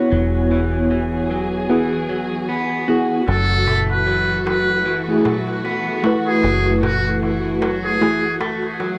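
Trip hop in F# minor at 76 BPM with a swung 4/4 feel, brooding and cinematic, in a short cut from a longer piece recorded at home on cassette with light reverb. A clean tine electric piano with medium tremolo and tape echo sits up front alongside a round, punchy dub bass, while lush, woody bowed strings with 12-bit sampler grit, a slightly broken-up guitar playing arpeggios through spring reverb, and a very quiet, breathy wind-like noise layer fill out the E to F#m7 harmony. At 3.3 seconds a distant, buzzy trumpet with a metal mute takes the melody and soft-handed darbuka enters in the background.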